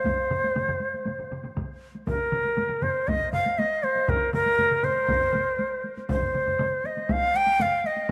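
Japanese traditional taiko drum ensemble music, powerful and driving at 119 BPM in a straight 4/4, cut from a longer piece and shifting into a new section at 2.1 seconds. An airy, end-blown bamboo shakuhachi sits up front carrying the melody between Bb4 and G5, with vibrato, a crisp, chiffy attack and a bright, close-miked tone. Beneath it a solo taiko part struck with heavy sticks has a vintage, band-limited character, while three taiko ensembles play alongside it: one close with hard sticks, one in the background with heavy sticks in a live room, and another in the background with hard sticks and a dated, narrow sound, all set in a huge ambient reverb with some lossy compression artefacts.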